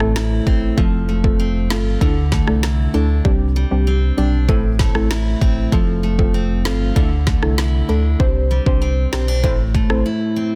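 Dancehall in A minor at 97 BPM, hypnotic and tough, built on an up-front electronic afro-pop kit with a deep kick, woody snare and rim click, a full sine sub bass with octave, soft, nasal chord stabs with chorus and a filter sweep, and a bright, full-bodied picked steel-string acoustic guitar playing arpeggios through Am, F, Dsus2 and Csus2, all in a dense, heavily limited modern mix with digital ambience, and the guitar carries on alone through a short break from 10.1 to 10.6 seconds.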